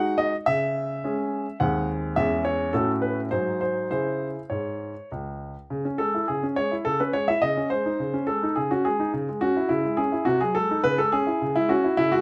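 A clear, intimate baby grand piano plays alone, up front with audible action noise, through a cheerful, playful classical-period sonatina fragment in three, its minor-key phrase heard twice, starting at 0.0 and again at 5.7 seconds, in a moderate studio reverb.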